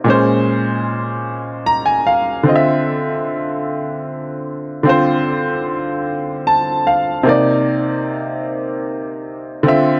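In a straight 6/8 at 50 BPM counted in dotted quarters, this sultry, yearning R&B fragment from a longer piece features a clear, worn grand piano playing alone and up front from Bb2 to Bb5 through Bbm9, Dm9 and Cm9 chords, with fills at 1.3 and 6.1 seconds, all set in light reverb and a small room ambience.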